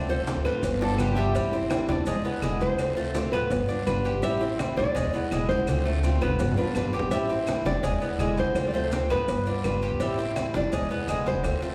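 A full-bodied, fingerpicked nylon-string guitar melody opens this sultry Cuban son and guajira excerpt in A minor at 166 BPM, over a boxy picked ladder-braced acoustic guitar, bright, metallic double-stringed tres arpeggios and a dark, thumpy gut-string upright bass up front, with low-tuned hard-hand congas, grainy maracas, raspy guiro and woody claves in the background, very quiet round cowbell and bongos, and an earthy bowed chamber violin section sounding distantly from 0.8 to 1.4 seconds, the whole band set in a reverberant church or concert hall.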